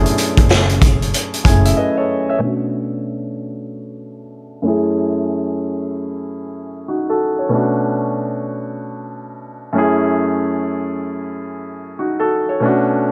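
A lightly reverberant boom-bap hip-hop excerpt in B minor at 94 BPM with a swung 16th feel, reflective yet tough, opens with the dark, mellow, cassette-tinged grand piano and woody pizzicato upright bass, joined a moment later by a gritty, punchy garage drum kit and faint jingly sleigh bells; the bass, drums and bells drop out by 1.8 s, leaving the piano alone under a filter sweep from 2.4 s as its F#m9 and Bm9 chords alternate until 13.1 s.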